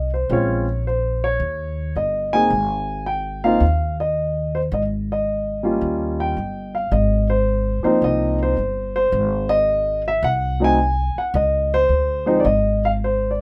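Sophisticated and warm, this jazz passage, cut from a longer piece, moves at 109 BPM in 4/4 with swing on the eighth notes, set in Ab major and tuned slightly low to A4 = 436 Hz. The grand piano carries the melody between F3 and Ab5, its sound intimate and natural, with the clatter of its action audible up close. Beneath it, a pizzicato upright bass with steel strings gives a woody, acoustic foundation in a low register, sitting up front in the mix just as the piano does. The harmony opens on Bbm7 and Eb before settling through Ab5 and Eb7, then shifts at 6.9 s into a second passage that colours Ab6 and Ab7 before closing on Dbmaj7sus2. A light reverb gives the pair a modest sense of room across the full 13.4 seconds.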